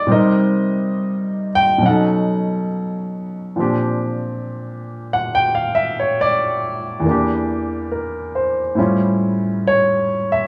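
A worn, warbling cassette sound with pitch drift, small-room ambience and moderate studio reverb frames this late-night, romantic jazz ballad excerpt in swung 4/4, where a solo baby grand piano, intimate and up front with audible action noise and short sustain, moves through Cm7, B9, Bb6, Em7b5 and A7b13 across its range from E2 to G5.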